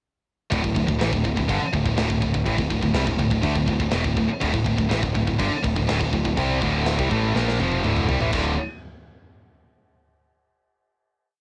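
An up-front, bright, high-gain electric guitar leads this short, epic and heavy metal piece with a picked power-chord riff. A second bright, distorted guitar joins it with its own picked power-chord riff and sits slightly lower in the mix. Behind them, a double-tracked fuzz guitar adds a thick, warm power-chord riff from the background. An overdriven picked electric bass, heard direct and amped, drives steady eighth notes underneath and doubles the guitar riff. The tight acoustic drum kit plays a straight metal drive groove with a tight kick, a medium-tuned snare, toms and bright crash cymbals, and carries a big-room character. A drum fill from 7.4 s leads to a final D5 chord at 8.3 s, after the riff has worked over D minor from the start. The home cassette recording puts a tape grain on the guitars and drums, with little reverb overall.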